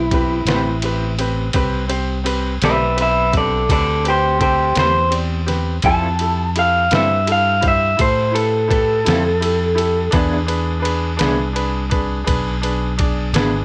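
Opening on a lead electric guitar through a small old amp, slightly broken-up and lo-fi with slapback echo, over a brilliant grand piano with audible action noise and a round, dark fingered bass, this brooding, mournful slow blues in A minor at 56 BPM in 12/8 brings in a gritty, pitched-down trip hop sampler-style kit with a thumpy kick, ride cymbal and snare at 0.1 seconds and a second, background guitar with tremolo at 0.5 seconds, moving through Am9, Fmaj7 and E7 as the lead falls silent at 10.1 seconds in this dry excerpt cut from a longer piece.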